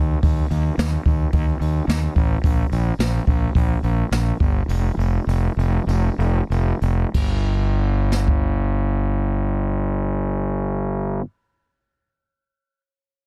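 A dense, heavily limited modern master with little reverb frames this short excerpt of quiet-loud alternative rock in straight 4/4, cathartic and anthemic in mood, moving between 92 and 109 BPM and slowing down from 2.4 to 7.1 seconds. Up front, a fuzz-drenched fingered electric bass with overdrive growls through a low register from the opening until 11.2 seconds. A jazz drum kit played with brushes in a studio room adds a boomy kick, medium-tuned snare, hi-hat and dark ride cymbal, stopping at 8.4 seconds, just after the first section gives way to a second at 7.1 seconds.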